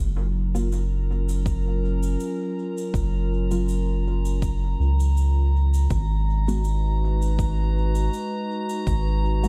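A round, up-front analog bass and muted, filtered dub chord stabs, soaked in phaser, lush chorus, cassette tape grit and dub echo, open this spacious, deep ambient dub excerpt at 81 BPM with a light 16th-note swing, joined at once by a warbling, nostalgic tape-like pad holding sustained chords. A hall-toned cabasa with dub echo enters at 0.6 seconds, a glassy, drifting harmonics texture floats high above from 0.8 seconds, and an overdriven electronic kick arrives at 1.5 seconds. The dark production moves from F#maj7 to G#m7 at 5.9 seconds, keeping the low end weighty and the upper layers hazy.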